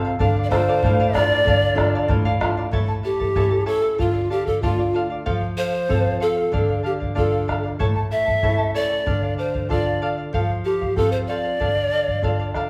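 Wistful and melancholic, this Andean folk piece moves at 95 BPM in a straight 2/4 feel, set in D minor and cut from a longer performance. A polished pan flute carries the melody up front, its airy, woody tone marked by vibrato, tongued notes and a breathy chiff that make the line sound expressive. For the opening moments, from 0.4 to 2.1 seconds, a bright large quena adds a soft-edged second line in the background, end-blown and shaded with its own vibrato. Underneath, a shimmering fingerpicked charango with double strings, some doubled at the octave, pairs with a warm fingerpicked flamenco guitar whose finger squeaks are audible. A deep, dark bombo sits prominently in the mix with a vintage, band-limited thump, while the chords circle through Dm, A and F. The ensemble sounds like a band playing live in one room, bathed in a large, wet studio reverb.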